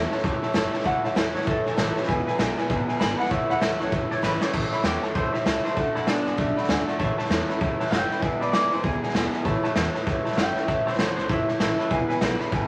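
A rowdy, retro rockabilly excerpt at 196 BPM in A major opens with a clean electric guitar solo over a twangy, slightly broken-up electric guitar riff with spring reverb, a very quiet, bright steel-string acoustic guitar with finger squeak, a woody upright piano in the background, and a dark pizzicato upright bass, while a raw garage drum kit with a punchy kick sits up front; a lo-fi electric guitar melody, also with spring reverb, joins at 0.9 s, and a drum fill at 4.2 s leads into the second section, all wrapped in a large studio reverb and vinyl crackle.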